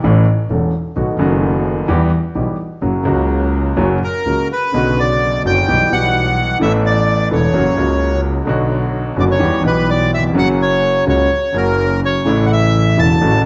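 A reedy, bright bandoneon carries the melody up front from 4.0 s in this sultry, melancholic tango, which moves at 128 BPM in 4/4 with a rubato feel in B minor and is cut from a longer piece. Alongside it, a warm concert grand piano with a natural tone and deep bass plays the accompaniment from the start. A single bowed double bass, clear and focused with vibrato and a smooth top, holds the low line. A moderate large-studio reverb gives the room a sense of space as the harmony circles through Em and F# chords.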